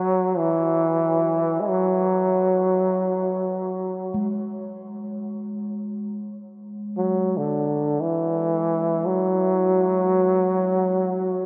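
This is world meditative music in free time, a haunting and spacious passage cut from a longer piece. A solo trombone carries the melody from the start, its tone warm with a gentle vibrato and a jazz-inflected phrasing that stays in a low register. Though it sits up front in the mix, the horn also sounds distant and roomy, and a delay trails its lines. At 4.1 seconds a bronze singing bowl enters, struck with a felt mallet and held far beneath the horn, its metallic ring mellow and soft with a slow beating shimmer. A huge, wet ambient reverb with a decay of 6.9 seconds surrounds the performance, giving the sound a vast, floating sense of space.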